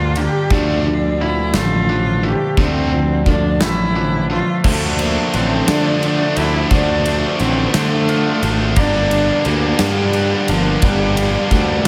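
A small room ambience frames this cinematic, melancholic post-rock excerpt, which moves in a slow 6/8 at 58 BPM and builds up over its first 4.6 seconds. A rich, distant cello carries the melody with smooth, even bowing and vibrato, its line wrapped in tape echo. Beneath it, a growly, up-front fuzz bass anchors the low end while a tight distorted guitar drives a bright, picked riff. A huge arena drum kit, airy and polished with a punchy kick, medium-tuned snare, ride and crash, comes in at 0.2 seconds. At 4.6 seconds, as the harmony settles onto Dm7 and later Gm7, a biting overdriven guitar joins the riff from the background. Very quiet layers fill in the texture: a twangy, fingered clean guitar and a dry, close-miked vibraphone play arpeggios, and a compressed pedal steel with fingerpicks, slide and volume swells holds sustained chords.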